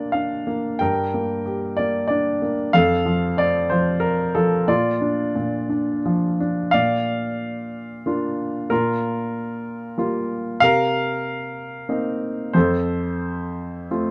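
The music moves in a flexible three-beat metre, its pulse breathing freely with rubato rather than holding a strict count. This short passage of lyrical classical solo piano, taken from a longer piece, has a sunny, warm mood. A single baby grand carries everything from 0.0 to 14.1 seconds, its tone present, polished and placed up front, ranging from F2 up to G5. The first phrase settles on a simple progression before a second idea begins at 6.7 seconds, moving through richer seventh chords and resting on F at 12.6 seconds. Light reverb surrounds the instrument, and the overall production leans dark and warm.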